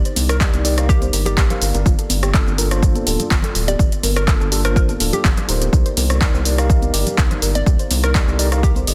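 The excerpt opens with a very quiet, warbling pad holding detuned, nostalgic chords beneath a rubbery, bouncy square bass that pumps against the sidechain, setting a late-night, moody deep house groove with a gentle swing. Within the first half second the overdriven house kit of handclaps, hi-hat, rim click and shaker arrives alongside a soft, round pluck tracing arpeggios through chorus, cassette-tape wobble and dub echo. Bright congas played with hard hands sit in the background, while a hollow, vintage square pluck carries the melody with chorus, delay and 12-bit sampler grit. A mellow tine electric piano adds clean stabs coloured by tape echo and that same grainy sampler texture, and a dry, punchy electronic kick lands up front from 0.4 seconds. The harmony moves between Cm9 and Gm9 under digital ambience, all pressed into a dense, heavily limited modern master.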